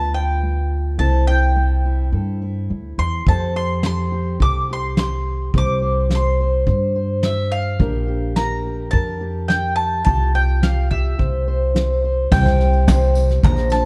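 A bright, double-strung bowl-back mandolin carries the melody of this hopeful, pastoral acoustic folk excerpt at 106 BPM in straight 4/4. Beneath it are fingerpicked steel-string guitar with audible finger squeak and a woody pizzicato upright bass sitting up front. A soft brush kit with a fat snare, tight kick and dark cymbals joins at 3.3 seconds, and a background cajon and jingly tambourine slip in at 12.3 seconds, all within a dry, warm production.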